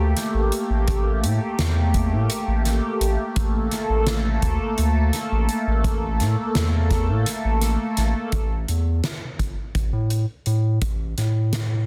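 Driving and tense, this progressive instrumental band piece runs in 7/8 at 169 BPM counted in eighths, with a straight feel, and is cut from a longer work. A phased analog pad carries the accompaniment, its detuned sawtooth tone swirling and warbling through phaser and chorus, with a slow attack and sustained, vintage character, until it stops at 8.3 seconds. Underneath, a round analog bass sits deep and dark, its sine-like, fast-attack notes sustaining through to 11.9 seconds. A soft-mallet drum kit of hi-hat, punchy kick and fat snare enters at 0.2 seconds, its acoustic sound placed up front with a big-room character. The harmony holds on Gmadd9/A before moving to A5 for a brief closing section, and the mix is dry, dense and heavily limited in a modern way.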